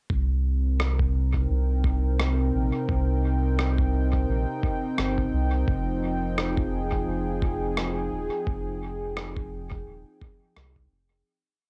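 A soft, slow kick with a gentle swing on the sixteenths anchors this short, hazy ambient dub piece, joined at 0.8 seconds by a sparse rim click that trails off into dub echo. Both drum sounds are sampler-style, compressed, pitched down and muffled, re-recorded in a large room and coated in cassette tape grit, the kick landing with a thumpy weight. Underneath, a deep, round sub bass blends triangle and square waves into a mellow, up-front dub line with a fast attack and long sustain. A smooth sawtooth pad, detuned and thickened with chorus, tape character and plate reverb, swells in slowly and holds sustained chords that shift from Cm7 to Fm7 at 5.7 seconds. The whole groove carries a light, homemade cassette feel and a spacious mood before fading out from 7.5 seconds to the end.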